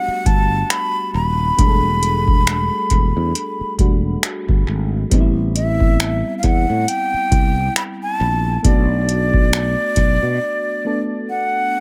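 A breathy, straight-toned concert flute with analog delay carries the melody over a mellow, round FM electric piano with chorus and delay, opening this moody, late-night contemporary R&B excerpt in E minor at 68 BPM with a swung 16th feel, as a growly, punchy fretless electric bass and a booming, overdriven analog drum machine with a deep kick, metallic hi-hats and finger snaps join almost at once, moving through Em11, Am9 and Bm7 in an echo-heavy mix until the drums and bass fall away by 10.4 seconds, leaving flute and piano for a brief closing break.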